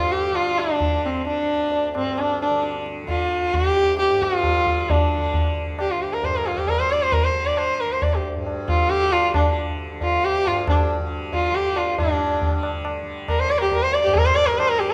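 A moderate recital-hall reverb gives this Hindustani classical piece, cut from a longer performance, an open, resonant space. A single bowed sarangi carries the melody up front, its nasal, focused voice gliding between notes with portamento, light vibrato and a smooth top, while sympathetic strings ring beneath it. Underneath, a softly plucked tanpura holds a low, buzzing drone with a shimmering halo, sitting well back in the balance. A high-tuned tabla, close and ringing, enters at 0.3 s and marks the four-beat metre as the music gradually speeds up. The mood is meditative and full of longing, with a new section arriving at 12.0 s before the excerpt ends at 14.9 s.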